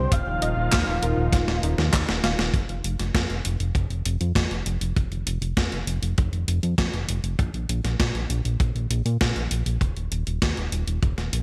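This synthwave excerpt in a straight 4/4 has a nostalgic, romantic air and bright 1980s-style digital production with light reverb. It opens on an Ebsus2 chord, where a warm analog pad with soft attack, chorus and sidechain pumping holds sustained chords while a smooth, expressive sawtooth lead with vibrato, ensemble chorus and delay sings a brief melody that ends by 1.9 seconds. A soft, round pluck with chorus and delay sits darkly in the background, decaying arpeggios until 2.4 seconds. A drum fill runs from 1.3 to 2.5 seconds on a gated, sampler-style drum machine of handclaps, hi-hat and snare, tape-tinged and up front with gated reverb on the snare. From 2.5 seconds the harmony drops away and the fat, detuned analog bass, thick and mellow with filter sweeps and sidechain pumping, carries the music alongside the punchy, rolled-off acoustic kick and the drum machine. An Eb5 chord arrives at 9.8 seconds before the bass and drum machine close out the passage.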